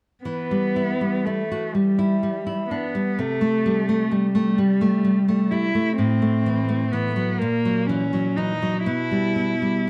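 In a slow 6/8 at 42 beats per minute, counted in dotted quarters, the beats fall unevenly and the time stretches freely with rubato. This romantic duo for cello and classical guitar sits in E minor and carries a melancholic, solemn mood, and it is cut from a longer piece. A single bowed cello sings the melody from 0.2 seconds, its tone soft in attack and shaded with vibrato and expressive portamento, ranging from G3 to E4. Just after, at 0.3 seconds, a fingerpicked nylon-string guitar lays down a bright, full-bodied accompaniment spanning A2 to F#4, both instruments placed up front. The harmony moves from Em through C5 and Am to a tense F#7/A# before settling on Em/B near 8.9 seconds. A moderate spring reverb and a dark, warm production give the pair a shadowy, intimate glow.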